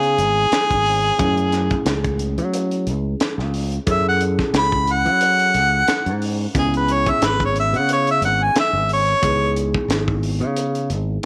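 A straight-eighth groove in 4/4 with a faint sixteenth-note swing drives this brooding, soulful blues excerpt, cut from a longer piece. Up front, a harmonica with a touch of overdrive plays a jazz-style solo, its scooped notes, light vibrato and smooth top ringing in the upper register until it stops at 9.6 seconds. Beneath it, a reedy electric piano, gritty through a combo amp and colored by phaser, comps on C#m7 and F#m7 before returning to C#m7 at 6.6 seconds, then adds a brief fill at 10.9 seconds. A fingered electric bass sits round and punchy, while a muffled, lo-fi drum kit keeps a tight kick, high-tuned snare and hi-hat in a small, saturated room sound with a rolled-off top. Light reverb gives the whole a close, intimate ambience.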